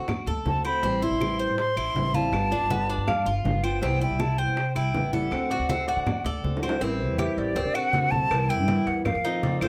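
A relaxed, danceable slice of Cuban son and guajira at 160 BPM in 4/4, cut from a longer piece. A hollow, airy concert flute carries the melody from 0.5 seconds, close-miked with vibrato and a crisp attack, over a picked steel-string acoustic guitar whose finger squeaks come through and a bright, metallic Cuban tres playing arpeggios on its double strings. A thumpy, dark upright bass with gut strings anchors the low end, while ringing, low-tuned congas sit close and dry under soft hands. Tight, high-tuned bongos and cowbell with a vintage, band-limited tone stay in the background alongside woody claves heard distantly in a large room. A fingerpicked flamenco guitar adds a second line from 2.5 to 6.8 seconds, a drum fill leads into a new section at 6.8 seconds, and the chords move through D7, Am7, G7 and Cmaj7 before closing on F7, all in a moderate studio reverb.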